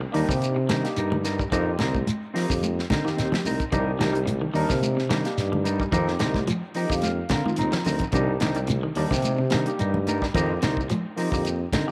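Driving and intense, this afrobeat excerpt rides a lightly swung sixteenth-note groove over an alternation of Cm9 and F7sus4 chords. A punchy, close-miked tuba carries the bass line up front with a light vibrato, while a tight funk drum kit with a dry, high-tuned snare and a snug kick holds the pulse. A grainy shekere sits close and dry, and bright, damped congas join at 0.7 seconds from further back in a small room. Two electric guitars share the mid-range: one, twangy and slightly broken-up, plays background arpeggios, and a dark, clean one adds fingered stabs. A barky tine electric piano, lightly overdriven and treated with a phaser, supplies accompaniment and takes a fill at 6.5 seconds, with a drum fill at 7.5 seconds, all set in a moderate spring reverb.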